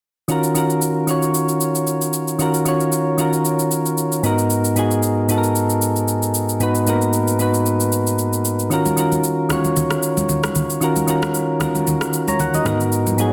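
This soulful, late-night amapiano excerpt opens with soft, round electric-piano-like synth keys, mellow and up front with a gentle chorus, moving between Ebm7 and Abm7 chords over a swung groove. An electronic shaker and rim click drive the rhythm from the start, with a touch of soft clipping on the snare. At 8.9 seconds, acoustic congas with a thick-skinned, vintage tone join the percussion. A very quiet electronic riser appears at 13.2 seconds, just before the fragment ends. Light reverb surrounds the parts, and the mix has a dense, heavily limited modern finish.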